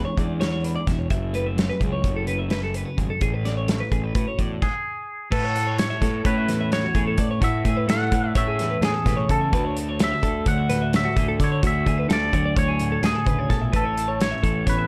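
Math rock and midwest emo in a brisk 9/8 at 257 BPM in A major, bright and wistful, moving through chords such as F#m9, Amaj13 and Dmaj9 in a short cut from a longer piece. Two chiming twelve-string electric guitars share the ground, one picking accompaniment and the other spinning background arpeggios bathed in lush chorus and slapback echo, over a round, fuzz-overdriven picked bass and a loose, up-front acoustic kit with a pumping small-room sound and a tight kick. Entering at 4.6 seconds, during a brief stop that lasts until 5.3 seconds, a twangy lead guitar with spring reverb and slapback echo carries the melody up front, all set in a dark, warm production with light reverb.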